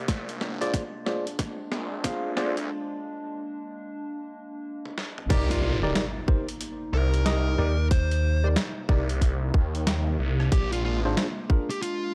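Playful and swaggering, this glitch hop cut at 92 BPM in C minor swings over an up-front, tight electronic kick and a gritty, pitched-down boom bap kit while a swirling, detuned saw bass and a warbling, nostalgic pad sit under worn tine electric piano stabs that ride a filter sweep through the build-up, before a dark fuzz lead guitar and a background impact arrive at the drop at 5.3 seconds, joined briefly by a punchy, growly slap bass at 7.6 seconds, all in a dry, cassette-tinged hardware sound.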